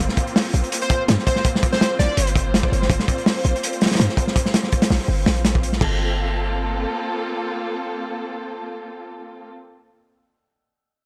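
A crunchy, saturated breakbeat kit with a punchy kick and dark cymbals sits up front in this dark, atmospheric drum and bass and jungle excerpt at 165 BPM in G minor, alongside a deep, boomy 808-style bass in a small, gritty room. A lush bowed string section holds sustained chords with vibrato and portamento throughout, while early on a bright, detuned plucky unison lead adds a brief, catchy melody through dub echo. The drums stop at 5.9 seconds and the bass at 6.9, leaving the strings alone until 9.5 seconds.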